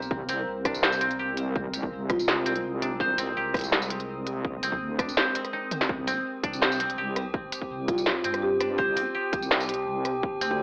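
An up-front industrial drum kit with clanging snare and crisp hats drives this tense, cinematic half-time drum and bass excerpt, joined by a heavy electronic kick, a deep wobbling sawtooth bass with chorus, dry woody koto arpeggios carrying 12-bit sampler grit and digital delay, and a moody ambient pad pumping in the background, while a round soft-mallet marimba melody surfaces briefly at 2.1 and 7.9 seconds and an eerie, nasal metallic drone enters at 6.3 seconds, the mix set in a moderate digital room reverb with an AM radio tone.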